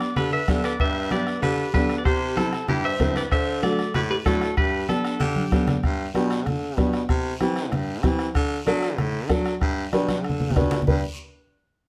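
A twangy clean electric guitar carries the melody through the first 5.6 seconds, drenched in spring and plate reverb with slapback echo, while a growling clarinet weaves a gritty second line in the background, a raspy baritone saxophone holds down the bass, and a dark, woody upright piano with audible action noise, a soft-beaten bombo, thick-skinned congas and a faint guiro drive this festive, danceable cumbia fragment, with drum fills at 5.4 and 10.1 seconds.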